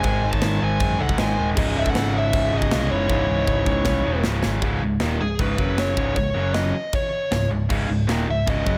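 Aggressive and relentless, this short heavy metal passage charges ahead in a straight 4/4. A nasal lead guitar with a parked wah and a touch of overdrive carries the melody throughout, while a dark, distorted bluesy lead adds a second line in the background until about 4.2 seconds. Beneath them, three rhythm guitars share the riff: a bright, picked, distorted guitar, a bright, compressed distorted one, and a double-tracked, overdriven stack guitar sitting very quiet in the mix. A growly, punchy picked bass and an up-front, polished drum kit with tight kick, medium-tuned snare, toms and bright china and crash cymbals drive the low end. A drum fill runs from 3.1 to 4.6 seconds, leading into a second section built on power chords, and the whole sound stays dry with little reverb.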